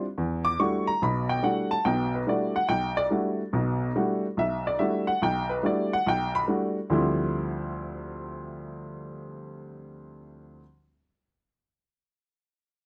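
A swung eighth-note feel in 4/4 drives this jazz excerpt, cut from a longer piece, where a lone upright piano plays for about 10.6 seconds, its woody, polished tone sitting up front and spanning from deep bass to bright upper register. The mood is intense and hypnotic, with the harmony resting on an Em11 chord before shifting to Dm11 at 6.9 seconds for the second section. Close, detailed miking and a light reverb keep the sound present.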